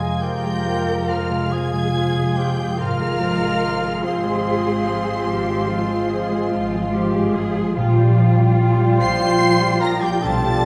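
Yearning and melancholic, this rubato orchestral passage in 12/8, cut from a longer piece, sets a lush, vibrato-rich violin melody high above a dark cor anglais, a very quiet clarinet, an airy, hollow flute and softer background violins, while dark violas, tight French horn chords, a ringing thumb-plucked harp, woody double basses and expressive cellos fill out the harmony on a reverberant scoring stage heard from further back.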